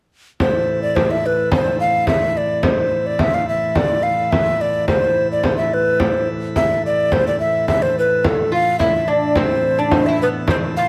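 A short excerpt of a driving, ancient-sounding medieval dance in A minor opens at 0.4 seconds with a tenor recorder, organ drone and frame drum all sounding together at a straight 107 BPM in 2/4. The tenor recorder carries the melody up front, its airy, hollow wooden tone marked by chiff on tongued notes and a touch of vibrato, ranging from A4 to F5. Beneath it, a pipe organ holds a drone from A2 to E3 on a full, brilliant plenum with mixtures and a romantic voicing, set lower in the balance. A deep, large frame drum supplies the percussion, up front yet carrying the distance of a large room. At 8.5 seconds a fingerpicked lute joins with a delicate second line between B3 and F4, its gut double strings, some doubled at the octave, adding a warm acoustic colour. Close, detailed microphones and light reverb keep the whole texture clear and present.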